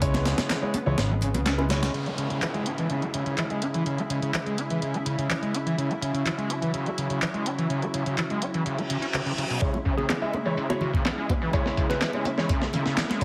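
Energetic, funky breakbeat excerpt at 125 BPM in C# minor, where a screaming, squelchy distorted acid riff with tape echo and a lush detuned unison pad with sidechain pumping run throughout, while a gritty, thumpy sampler-style break kit, damped high-tuned congas, dark grand piano stabs and a fat analog bass open the piece, punchy analog drum machine handclaps and hi-hats carry on from 0.5 s, background downlifters, risers and a reverse cymbal lead into a build-up at 9.6 s with filter sweeps on the drums and acid line, and a round, warbling FM lead with an AM radio sound appears briefly at 10.0 s, all under a heavily compressed radio sound with vinyl crackle.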